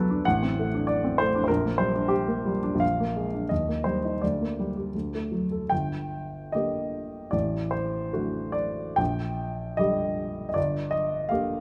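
This stormy, passionate romantic character piece for solo piano moves in 2/4 at a flexible 66-99 BPM with rubato, set in G minor. A baby grand spanning G1 to G5 sounds intimate and up front, with short sustain and audible action noise caught by close, detailed microphones in a moderate recital-hall reverb. Its harmony passes through D7/A, Bb7, Eb and D before a new section at 5.7 s settles back toward G minor, ending on Gm at 10.6 s in this brief excerpt from a longer work.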